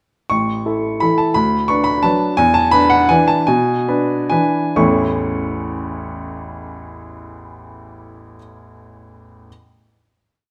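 A classical piano waltz in A major, this brief, complete piece moves in a graceful, playful 3/4 with a flexible rubato feel, its tempo ranging from 121 to 182 BPM. A solo upright piano carries everything, sounding clear and woody, with long sustain and an up-front, natural presence, spanning A1 to C#6 and tuned slightly low to A4 = 439 Hz. A single-line melody rides over a waltz bass as the harmony moves from A through Bm/D to E7. From 1.9 seconds the music slows, arriving at a closing A chord at 4.8 seconds that is held until about 7.3 seconds, and the piano sounds until 9.5 seconds. A moderate recital hall reverb, about 1.3 seconds long, gives the instrument a natural sense of space.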